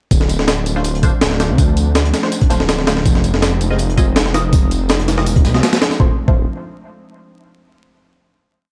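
A dry, gritty hardware recording with vinyl crackle and a small, lightly reverberant room frames this raw, frenetic drum and bass and jungle piece in D minor at 163 BPM, a drop from 0.1 s that moves from Dm7 to Fm7 before resolving on a final Dm7 chord at 6.0 s. Up front, a compressed, pitched-up sampler-style kit with a thumpy kick and high-tuned snare plays a heavily chopped breakbeat, while a dark, saturated acoustic break with tambourine and a rolled-off top loops with edits in the background, and a thick, menacing detuned saw bass with tube saturation holds long gliding notes. An airy, breathy pad with chorus sustains soft chords behind, and from 0.8 s muted, deep dub chord stabs with phaser and dub echo add syncopated hits, one shape moved in parallel.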